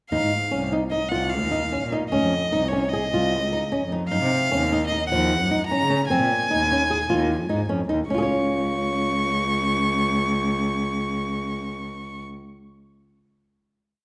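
A rich, focused violin leads this short, complete piece of contemporary chamber music, playing a motif-based melody in sentence-like phrases, bowed with vibrato and set up front with a slightly boxy edge. It sits in a hopeful, playful mood at 150 BPM in an uneven 5/4 metre with a straight feel, in Db major and tuned a touch high to A4 = 441 Hz. Beneath it, a flamenco guitar with fresh strings fingerpicks a warm arpeggiated ostinato, while a dark, woody cello, bowed with vibrato and heard close and up front, drives a syncopated bass riff. The harmony moves through Ebsus2, Dbsus2, Gb5 and Fm before the trio settles on a final Db chord from 8.1 seconds. All three players sound together from the start in a wet recital hall with a long, lingering reverb tail.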